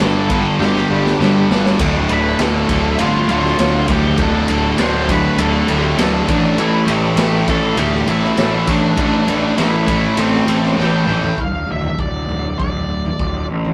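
Brooding and dark, this quiet-loud alternative rock passage sets a thick, bright fuzz guitar riff over a cranked stack guitar and a double-tracked overdriven electric guitar in the background, while an octave-fuzz lead guitar carries the melody above a growly, up-front fuzz bass and a raw garage drum kit with a punchy kick and a rolled-off top, drum fills landing at 0.6 and 10.8 seconds, before the riffing guitars drop out at 11.4 seconds and a very quiet, full-bodied fingerpicked steel-string acoustic guitar plays arpeggios in a rough, tube-saturated rehearsal-room sound.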